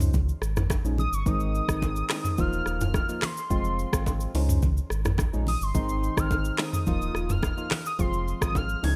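This breezy, joyful afrobeats passage in Ab major opens at 0.0 seconds with soft, round electric-piano-like synth keys, a deep sine-toned sub bass doubled at the octave, and an up-front electronic afro-pop drum kit. The kit's deep kick, metallic hi-hat, handclaps, rim click, shaker and toms carry a gated reverb over a straight 4/4 at 107 BPM. Congas and bongos join at 0.1 seconds, sitting acoustic and in the background with a small-room sound. At 1.0 seconds a velvety, full-bodied synth lead enters high in the register, its detuned sawtooth unison smoothed by chorus and vibrato. The mellow keys, also chorused and detuned with a filter sweep, cycle through Dbadd9, Ab, Ebsus2 and Fm twice beneath the melody. The whole piece has a bright 1980s-style digital production with light reverb, and it is cut from a longer work.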